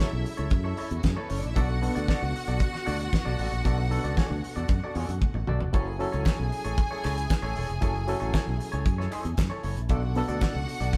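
Sultry, danceable disco at 115 BPM in F# minor, built on a fat-snared, tight-kicked 70s drum kit and a bright, up-front fingered bass through an envelope filter, with a barky, lightly overdriven electric piano shimmering in fast tremolo, a twangy clean guitar and a lush bowed string section over F#m7 and Bm7 chords, a drum fill at 5.2 seconds, and very quiet crisp handclaps joining at 6.3 seconds, all played together in a stone room.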